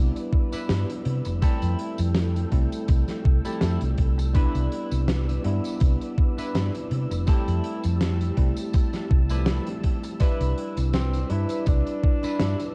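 A dark, tape-softened sound with a small-room reverb gives this dreamy, faded vaporwave fragment, cut from a longer piece, its hazy cassette character. A thumpy electronic kick sits up front with sampler grit, while a big rock kit adds hi-hat, a fat snare and tambourine through the same vintage 12-bit crunch. A round, hollow-body fingered bass anchors the low end, and a bell-like tine electric piano with subtle chorus and analog delay carries the accompaniment under a silky, warbling string machine that holds soft sustained chords. A bright, picked semi-hollow guitar plays a clean riff coated in chorus and delay, as the harmony drifts between Cmaj9 and Fmaj9 over a lightly swung groove. At 10.9 seconds a breathy tenor saxophone enters with a whispered, intimate jazz solo of scooped notes and light vibrato.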